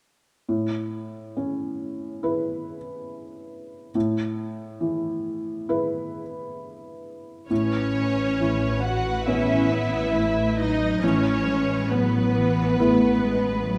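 A moderate scoring-stage reverb surrounds this tender, uplifting passage from a cinematic film score in A lydian. It begins at 0.5 seconds with a felt-muted upright piano, soft and intimate up front with audible action noise, on an Aadd9 chord at a rubato 68 BPM in 4/4. At 7.5 seconds a mellow French horn with light vibrato carries the melody from the background alongside a distant violin section, while a second, smooth-topped violin section adds a supporting line, a viola section fills in the accompaniment and a double bass section holds the bass with a soft attack, before a focused, close cello section joins the bass at 9.3 seconds to complete the lush orchestral sound.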